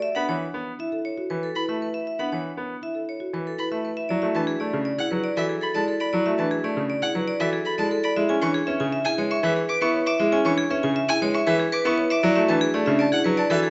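A ringing, metallic vibraphone played with hard mallets carries the melody up front in this propulsive, bright minimalist classical pattern piece at 118 BPM in 4/4, joined from 0.2 s by brilliant grand piano accompaniment with short sustain, woody marimba arpeggios on rosewood bars and a distant, focused solo violin bowing arpeggios with vibrato, as the harmony moves from B7(no3) into D lydian at 4.1 s through Dadd9(#11) and E7, set in a moderate recital hall reverb within a fragment cut from a longer work.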